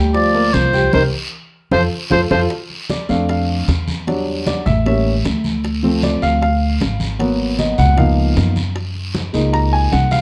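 The baby grand piano accompanies this Afro-Cuban jazz excerpt, sitting up front for the whole passage and taking a solo from 2.5 seconds onward. At 154 BPM in a straight 4/4, the feel is sophisticated and danceable. An oboe with a smooth top carries the opening melody in a classical style, joined by a mellow trombone with vibrato and scooped notes further back. The band hits an accent before the oboe and trombone stop at 2.4 seconds. Underneath, a woody pizzicato upright bass sits up front, round low-tuned bongos played with soft hands sound close and dry, thick-skinned congas stay in the background, and a raspy guiro echoes from a distant, large room. The harmony moves through minor ninth and altered dominant chords before landing on Gb69, and light reverb gives the production a dark, warm tone.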